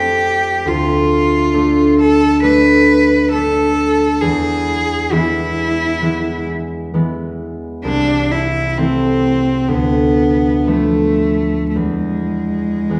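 A single bowed cello carries the melody up front, its rich, smooth tone shaded with light vibrato, in this elegiac, melancholic excerpt from a longer romantic classical duo. Beneath it, a concert harp supplies fingerpicked accompaniment, bright and ringing, as the harmony drifts from F and D minor toward E and back through A minor. The slow, rubato pulse of 52-69 BPM in 4/4 unfolds in the reverberant wash of a recital hall, heard from further back in the room.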